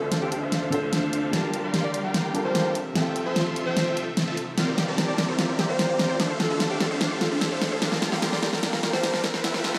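Heard through a big sound system in a bare stone room, this euphoric, playful future bass excerpt is bathed in a huge ambient reverb and thinned by a high-pass filter. At 148 BPM in a half-time 4/4 feel in F major, it is a build-up, with a drum fill and a filter sweep on the supersaw synth running throughout as the chords move from Dm7 through Gm7, Fmaj7 and C7sus4. Up front, a layered electronic big-room drum kit with a huge snare and hi-hat sits in a small room ambience, alongside lush, detuned supersaw chords, bright with phaser and a low-pass filter. A breathy, whispered alto saxophone carries the melody in the background with vibrato and scooped notes under dub echo, while a soft, felt-muted upright piano, also echoed, accompanies until 4.6 seconds, when a punchy, wave-folded unison pluck enters with arpeggios in dub echo. Beneath it all sits a very quiet, deep, saturated sub bass and a smooth, bowed symphonic string section holding sustained chords, and an electronic riser enters faintly at 2.8 seconds.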